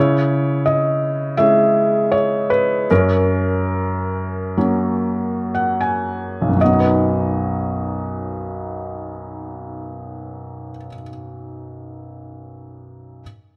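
Classical solo piano in B major, cool and bittersweet, moving in a lyrical, rubato 4/4 at 56-86 BPM: a soft, mellow felt-muted upright sits up front with intimate, detailed close miking, audible action noise and light reverb, slowing through the opening 6.6 seconds over C#m and F# chords, adding a brief fill from 5.0 seconds, then settling on B in this short excerpt tuned to A4 = 443 Hz.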